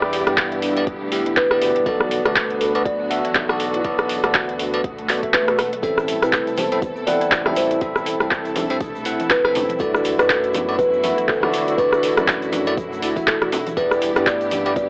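A bell-like tine electric piano stabs up front through phaser and analog delay over a deep house kit with metallic hats and a deep electronic kick, while a smooth gliding synth bass, mellow woody marimba arpeggios, lush background strings and a dark thumb-plucked kalimba melody entering at 1.4 seconds carry this earthy 121 BPM afro house excerpt in E minor through Em7, Bm7, Am and Dadd9, with a background swell at 5.0 seconds ushering in a grainy tube shaker and low-tuned congas, all colored by cassette tape and an AM-radio sound.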